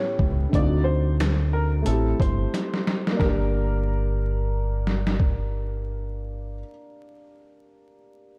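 Two upright pianos open this gritty, tough boom-bap hip-hop excerpt at 90 BPM in G harmonic minor, a polished melody line over a dark, boxy accompaniment with audible action noise and cassette-tape color, joined at 0.2 seconds by a round, up-front dub fingered bass and a compressed, pitched-down sampler-style kit with a thumpy kick, hi-hat and snare riding a swung sixteenth feel and a fill from 2.5 seconds, all wrapped in light reverb and vinyl crackle as the chords move from A7 to a Gm resolution at 3.2 seconds.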